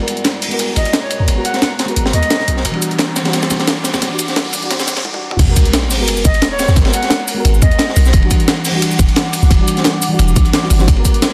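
A soft, round FM electric piano and an ethereal pad with sidechain pumping open this rolling, dreamy liquid drum and bass excerpt at 175 BPM, joined almost at once by a gritty, pitched-up sampler-style breakbeat kit layered with a dark, saturated acoustic break and a deep, sine-toned 808 bass, while an airy concert flute with tape echo carries two brief expressive melodic phrases, a background riser and sub drop build toward the drop at 5.4 s, and a punchy electronic kick enters up front over alternating G#m9 and Em9 chords.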